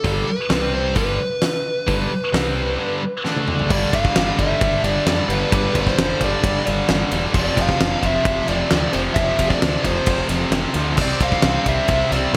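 A straight 4/4 pulse at 132 BPM drives this powerful, energetic hard rock excerpt in G mixolydian, anchored by a huge arena drum kit that sits up front with a fat snare, punchy kick and bright cymbals, and a drum fill at 3.2 seconds leads into the second section at 3.7 seconds. A growling fingered electric bass, overdriven and punchy, holds down the low end beneath a scooped high-gain guitar and a tight distorted guitar, both picked riffs tucked in the background. Over them, a biting lead guitar carries the melody with overdrive and delay, above a progression that moves across C5, G and D5 power chords before arriving at G5, F and C. At 3.7 seconds a very quiet, double-tracked heavy high-gain guitar thickens the riff, while a piping tonewheel organ with slow rotary speaker adds barely audible sustained chords. Moderate plate reverb and small room ambience frame a bright 1980s-style digital production.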